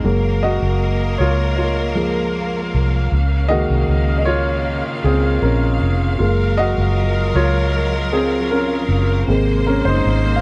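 In a straight, unhurried 4/4, this melancholic pop ballad excerpt centres on a clear grand piano that carries a solo from start to finish, sitting up front with long sustain over a Gbmaj7 to Db6 and back to Gbmaj7 progression. Beneath it, a vintage foam-muted fingered electric bass adds a dark, round and punchy low end, while a bright studio string section holds lush, bowed chords with intense vibrato. The dry, close 1970s-style sound carries only light reverb, giving the longing mood an intimate feel.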